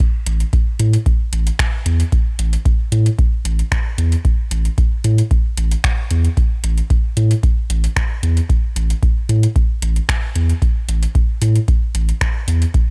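The sound is dry and close, with very little reverb, and the low end sits heavy and up front in this short dub techno excerpt from a longer piece. The mood is hazy and nocturnal, moving in a steady, straight 4/4. An analog electronic kick drum anchors the whole stretch, deep and tape-warm at the front of the sound. A layered deep house drum kit of finger snaps and metallic hi-hats runs alongside it at a lower level, overdriven and re-recorded in a large room for a gritty, roomy edge. From 0.3 seconds a round, sine-like sub bass enters with a fast attack and sustained notes between A1 and A2, pumping against the sidechain to give the groove its breathing pulse.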